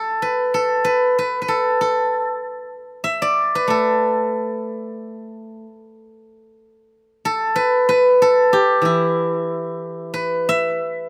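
A steel-string zither opens this short cut from a longer Chinese traditional piece and carries it alone from 0.0 to 11.1 seconds. Played with fingerpicks, its acoustic tone is ringing and silvery, sitting up front and spanning E3 to E5. The mood is elegant and longing, set in an E yu mode with the instrument tuned to A4 = 444 Hz. The pulse sits around 94 BPM in 2/4, but the phrasing is rubato and flexible in time. Recorded outdoors with little reverb, the sound stays dry and close, and a single section unfolds until 10.1 seconds.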